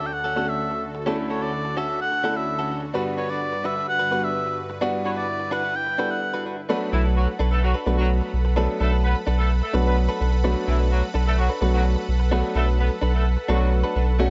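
A straight, driving four-four pulse carries this energetic pop passage, cut from a longer piece. A build-up opens on a smooth, detuned supersaw holding sustained chords and a clean, compressed electric guitar riff with subtle chorus, while a polished baby grand piano soon adds accompaniment. Up front, a solo oboe sings the melody in a classical style with light vibrato and tape echo until 6.5 seconds. The drop arrives as a tight, vintage-toned horn section takes over the melody at 6.9 seconds, doubled in octaves and also treated with tape echo. A deep, round sub bass enters at the same moment, sitting prominently beneath the harmony as it moves to a minor seventh chord, all within a studio ambience.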